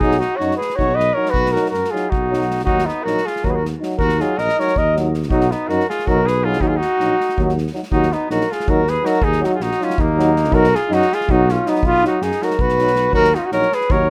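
This Balkan brass band piece in 7/8 is cut from a longer performance, with a virtuosic, bittersweet mood. A dark, close-miked cornet carries the melody up front with light vibrato, while a clear trumpet plays a second line from a more distant, roomy position, also with light vibrato. In the background, a warm euphonium and a roomy trombone supply accompaniment, and a tuba with light vibrato and a smooth top anchors the bass. An acoustic drum kit played with bundle sticks adds an airy, polished pulse from a punchy kick and a medium-tuned snare. The harmony alternates between B and Ebm, and the opening passage repeats from 7.9 s in a rough home demo mix with light reverb and small room ambience.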